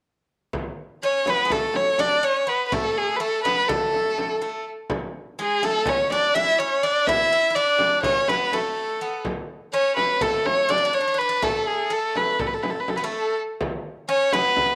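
A single bowed violin leads this stately makam ensemble piece, sitting up front with a rich, slightly boxy tone, expressive vibrato and sliding portamento as it sings its melody between G#4 and E5. It enters at 1.0 s in makam rast on A, moving at 248 beats per minute counted in eighths across a straight 9/8 metre. Alongside it, a picked acoustic bouzouki carries a second line an octave lower, its double strings sounding bright and metallic, with some strings octave-doubled and a slapback echo trailing each note. Underneath, a large frame drum, starting at 0.5 s, gives a deep pulse struck with hard hands, sounding distant as if set back in a big room. A moderate echo-chamber reverb and small-room ambience give the ensemble a warm setting, and the recording is a single section cut from a longer piece.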